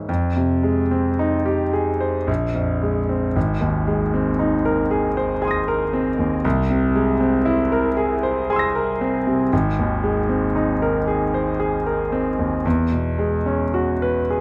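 A bright, intimate concert grand piano plays alone in this nocturnal, wistful fragment of impressionist classical music, drifting in a rubato 3/4 at 52-59 BPM through lush chords from Fm9 to E69, its up-front tone carrying deep bass, long sustain and audible action noise within a dark production touched by light reverb.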